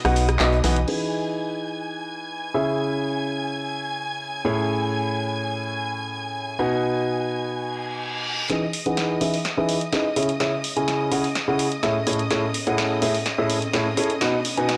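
A brilliant concert grand piano carries this joyful, euphoric piano house excerpt in E major at 126 BPM, playing a riff with deep bass under a low-pass filter that is swept through the passage, over chords moving from Emaj7 through C#m, Amaj7 and B. Behind it, a lush, bowed studio string section holds sustained chords with vibrato and an intense ensemble sheen. At the very start, a hollow, dark, organ-like FM bass with a fast attack sounds briefly up front, alongside a punchy analog drum machine re-recorded in a large room and a background acoustic kit with a medium-tuned snare and rolled-off top. The drum machine returns at 8.5 seconds with crash, handclaps, hi-hat, rim click and snare for a drum fill and build-up, while a very quiet reverse cymbal and riser enters at 7.8 seconds to push toward the final B chord. The whole mix has light reverb, a small room ambience and a cassette tape character.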